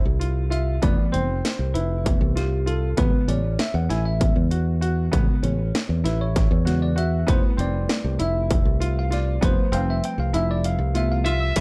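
Bright and driving, this progressive instrumental excerpt in 7/8 at 196 BPM (eighths) features a bell-like tine electric piano soloing over Fmaj9#11 and Amaj9 harmonies, backed by a growly fingered electric bass, a brilliant baby grand piano playing delayed arpeggios, and a distorted techno drum kit with a cracking snare whose kick and snare drop out at 9.7 s, before a smooth overdriven lead guitar enters at 11.2 s, set in a dark production with light reverb.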